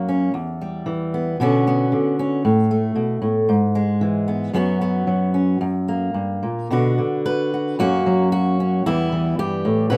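Loose and rubato over a 4/4 pulse, this intimate, reflective folk excerpt features a solo fingerpicked steel-string acoustic guitar, its warm, up-front concert tone ringing from E2 to B4 in a light reverb. The harmony moves through Em, Bmadd9, Asus2 and E/G# to a suspended F#sus4 resolving to F#. At 6.7 seconds a new section begins on Bm before passing through F# to Em.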